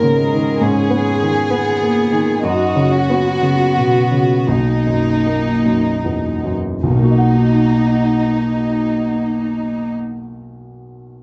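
Neoclassical piano and strings in B major, an intimate, tender fragment cut from a longer piece, moving in a rubato 4/4 at around 50-69 BPM and slowing through its first 6.8 seconds over G#m, F#sus4 and Bmaj7. A close chamber violin section carries the melody with vibrato, soft-attacked sul tasto bowing and plate reverb, while a single cello floats a pure, distant second line beneath it. Both strings stop at 9.9 seconds, leaving the natural, up-front baby grand piano accompaniment to ring on alone until 11.2 seconds in a small, wet room heard from further back.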